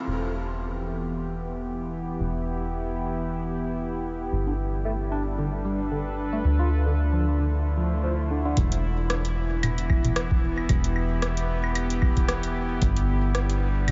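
A dreamy, reverb-soaked mix with a dark, muffled top end opens this eerie, glitchy IDM fragment in E phrygian, moving at 113 BPM in 4/4 with a light swing on the sixteenths. A warbling, lo-fi pad with a nostalgic, chorused haze holds sustained chords up front from the start, a filter sweeping across it through the first half, while a rubbery, hollow square bass bounces beneath with plucky, resonant notes that decay quickly. At 4.5 seconds a barky, clean tine electric piano adds arpeggios through a phaser and a diffuse ambient delay, the harmony drifting from Em through Gadd9 to Dm. At 8.6 seconds the piano drops out and the rhythm section arrives: a booming analog drum machine of claves, metallic hi-hats, rim clicks and toms, darkened by low-pass filtering and trailed by tape echo, together with a deep electronic kick, both re-recorded in a small room. The chords return to Em before settling on G as the piece is cut off.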